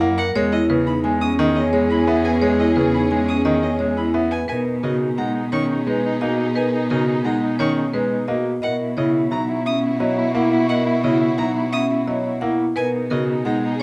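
A warm, reverberant production carries this propulsive, bright minimalist classical pattern piece at 174 BPM in 6/4, cut from a longer work, where a woody marimba carries the melody over a mellow soprano saxophone second line, brilliant grand piano accompaniment, lush dark string chords, ringing vibraphone arpeggios, expressive and distant violin arpeggios, and an intense cello bass up front, settling into B major at 4.5 s.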